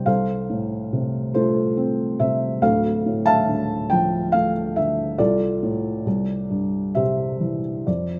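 Set in 3/4 at about 70 BPM with a rubato feel, this short lyrical classical piece for solo piano sits calmly in F major, tuned slightly low at A4 = 439 Hz. A felt-muted upright piano carries it alone from 0.0 to 8.2 seconds, its soft, boxy, intimate tone placed up front and reaching from deep bass notes up to A5, moving through F over C, a D minor add nine chord, back to F over C and on to C. Light reverb gives the dark, mellow sound a little air, and the passage is cut from a longer work.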